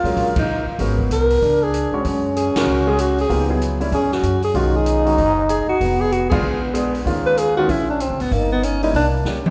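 Cool and swinging, this short cut from a longer small-group jazz piece moves at 192 BPM in 4/4 with a 63% swing on the eighths, set in Eb minor and tuned slightly sharp to A4 = 443 Hz. A warm, close-miked alto saxophone carries the melody up front with vibrato, while a growling trombone supplies a second line that is breathy and raspy, with scooped notes and a smooth top. A clear grand piano comps underneath, and a pizzicato upright bass gives a woody, thumpy foundation down to F1. The open jazz drum kit brings dark cymbals, a medium-tuned snare and a boomy kick, with band accents at 0.3 and 2.5 seconds and a drum fill at 9.3 seconds. The whole group sits in a reverberant recital-hall space with a 1.7-second decay, and the harmony moves through minor sevenths, diminished chords and a Bb7b9 before closing on C5.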